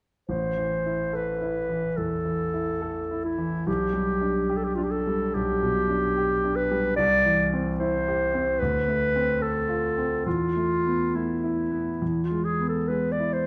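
Romantic classical music for clarinet and grand piano, elegiac and melancholic in mood, cut from a longer piece. Both instruments begin together at 0.3 seconds and play through to 13.5 seconds. The clear, classical-style clarinet carries the solo melody in its middle register, while the concert grand piano supports it with a smooth accompaniment that reaches down into deep bass and rings with long sustain and a vintage character. The pulse is free and uneven, shaped by rubato, and the harmony moves from A minor through G/B, C and Dm7 to a suspended E chord before settling on E major at 12.0 seconds. Both instruments sit up front in a moderate recital hall reverb, and the overall production is dark and warm.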